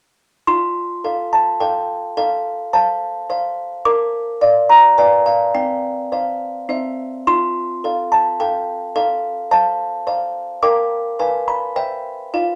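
A moderate club-like reverb gives this short classical lullaby a soft halo, with a solo music box sitting up front, its delicate, tinkling plucked tone from a small box sounding slightly out of tune. In F major at 106 BPM in a straight 3/4, the dreamy, innocent line runs from 0.5 to 12.6 seconds, cut from a longer piece. The harmony moves through F, Bb, Bdim7 and a Csus4 resolving to C before returning to F and closing on Gm7/Bb, Bdim7 and C.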